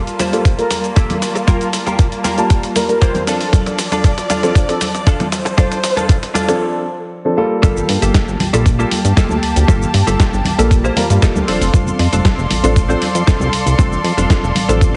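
A straight 4/4 groove is driven by a thumpy, gritty electronic kick up front alongside a dusty sampler-style soul kit of snare, hi-hat, toms and cabasa and soft-handed congas in this cosmic, sleek nu-disco excerpt. A dark, vintage grand piano and smooth bowed chamber strings pump to the sidechain over Gm9 and F6 chords. Meanwhile a clean, direct-recorded electric guitar riff carries chorus and slapback echo, and a breathy flute melody with analog delay sits in the background, the flute and piano both filter-swept through the build-up. After a break at 6.6 s, the drop at 7.6 s brings in a glossy, nasal chorused synth bass, heard through a heavily compressed, radio-like sound with light small-room reverb.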